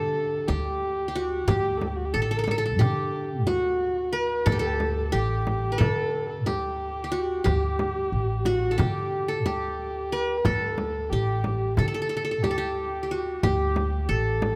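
Turkish makam ensemble music in a straight 9/8, hypnotic and full of longing, cut from a longer piece. An up-front, bright-edged qanun carries the plectrum-plucked melody on triple strings, while a dark kamancheh adds a nasal, boxy second line with vibrato and portamento, and a pizzicato upright bass gives a woody, thumpy low end. A close, dry frame drum joins at 0.5 s, and the detailed close-miked sound sits in a moderate concert-hall reverb.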